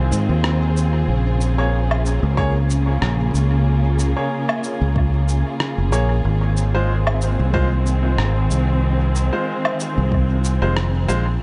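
The excerpt opens with dark, lush bowed strings holding sustained chords alongside bright upright piano stabs, their brilliant tone softened by a low-pass filter and trailed by dub echo. A round, up-front fingered electric bass anchors the low end from the start, while a muffled, pitched-down kit of electronic shaker, rim click and woodblock enters at 0.1 seconds, echoing as if re-recorded in a large room. This is hazy, meditative ambient dub at 93 BPM in 4/4, with a light swing on the sixteenths. The harmony moves from Ab6 to Bbm7 and back to Ab6 at 6.2 seconds. A deep, tape-toned electronic kick sits in the background from 2.4 to 10.3 seconds, and the band lands an accent near the end before the fragment cuts off, all under light reverb with a softened top end.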